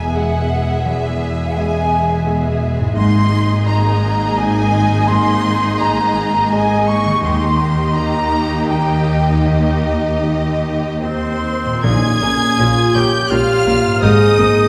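Opening on a lush, vibrato-rich violin melody over hollow flutes, ringing harp arpeggios, clear background piano and bowed low strings, this longing, sorrowful orchestral film cue drifts in a rubato 3/4 at 72-87 BPM, with a close-miked oboe taking over from the flutes at 11.0 s, and mellow French horns and a brief, very quiet timpani entry arriving at 11.8 s, all set in a wet scoring-stage reverb heard from farther back in the room.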